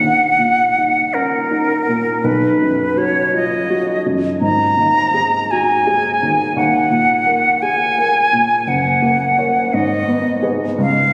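Solemn and yearning, this short romantic classical passage for flute and grand piano unfolds in 6/8 with a free, rubato feel, and it is cut from a longer piece. A silver concert flute carries the melody from start to finish, its metallic, airy tone softened by gentle vibrato and soft attacks, sitting up front and a touch louder than its partner. Beneath it, a baby grand piano supplies natural-sounding accompaniment across its low and middle range, also close and present, with a warm body. The harmony moves through minor and major chords, settling on a brooding minor close at 9.7 seconds. A wet church reverb with a long decay surrounds both instruments, and the sound carries the slightly compressed, roomy character of a phone recording made in the space.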